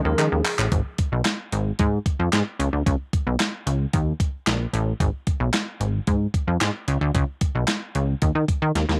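Straight 4/4 at 112 BPM drives this funky, late-night early-eighties boogie funk excerpt, where a tape-toned, sampler-style 12-bit drum machine with thumpy kick, medium-tuned snare, hi-hat and handclaps sits up front and opens with a fill at 0.2 s beneath a punchy, plucky sawtooth-and-pulse analog bass, while a clean tine electric piano heard through its built-in speakers and a very quiet, brassy, detuned analog pad with chorus and vibrato sound the opening D#9sus4 chord only until 0.7 s, after which bass and drums carry the Bmadd9 and D#5 harmony in a digital ambience.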